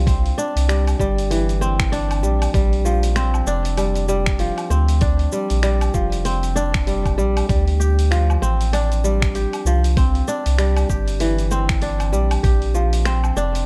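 A dark, dry production frames this hypnotic, mystical organic downtempo excerpt at 97 BPM in G dorian, where a crisp, ringing fingerpicked kora plays delayed arpeggios up front over a round, deep analog bass with sidechain pumping, while a gritty, compressed sampler-style kit of cabasa, finger snaps, hi-hat and woodblock swings on the 16ths beside a thumpy electronic kick that drops out at 12.6 seconds, all moving through C, Gm7 and Dm7.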